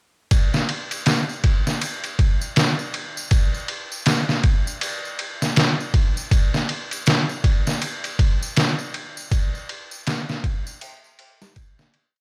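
A sampler-style trip hop drum kit opens the piece at 0.3 seconds, a compressed, pitched-down looped breakbeat with edits that sits up front with a thumpy kick, a medium-tuned snare and ride cymbal, muffled and tape-warm under a studio reverb. A tambourine enters at the same moment, warm, acoustic and set in the background of a small room, adding loose percussion beneath the kit. The mood is smoky and dark, with a lazy swing on the sixteenths that gives the groove a heavy, unhurried sway. The whole piece is one continuous groove running to 12.2 seconds, with a fade-out beginning at 8.3 seconds. The sound is dry and gritty, like a hardware recording pushed through transformer saturation, set in a digital ambience.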